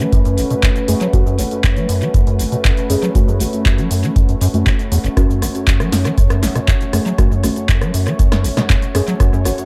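Acid house at 119 BPM in F# minor, this trippy, raw excerpt from a longer piece sits on a single F# minor chord for its roughly 9.7 seconds. A squelchy, resonant square-wave acid bass drives the riff with a filter pluck, fast attack and decaying notes, thickened by tube saturation, lush chorus, analog delay and sidechain pumping. Alongside it, a smooth, warbling vintage pad of detuned sawtooth and triangle tones holds sustained chords with a soft attack and long release, also pumping against the sidechain. Dark, deep chord stabs with a wave-folded edge add mellow accents through chorus, phaser and tape echo. The dry, deep electronic kick enters at 0.1 seconds and stands out front. A punchy, tape-warm analog drum machine fills in with cabasa, handclaps, hi-hat, rim click and a punchy snare, re-recorded in a small room and run through tape echo. Light reverb and digital ambience give the echo-heavy mix its hazy depth.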